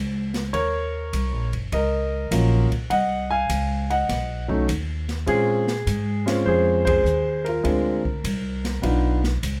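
A swinging 4/4 groove at 101 BPM, with a firm swing on the eighth notes, drives this cool jazz piano trio excerpt in Bb minor, cut from a longer piece and tuned slightly below standard pitch. A pizzicato upright bass opens the track at 0.0 seconds, woody, warm and up front with steel strings, ranging from Gb1 to Bb2. The open acoustic drum kit follows at 0.3 seconds, its ride and hi-hat carrying dark cymbal tones alongside a medium-tuned snare and a boomy kick, sitting well back in the mix in a small-room sound. The grand piano takes the melody from 0.5 seconds, warm, intimate and natural, with long sustain and audible action noise, moving between Gb3 and Ab5 over changes such as Ebm7, Dbmaj9/C, Bbm9 and Dm7b5 before closing on Bdim. The whole band hits an accent at 6.8 seconds, and light reverb surrounds the trio.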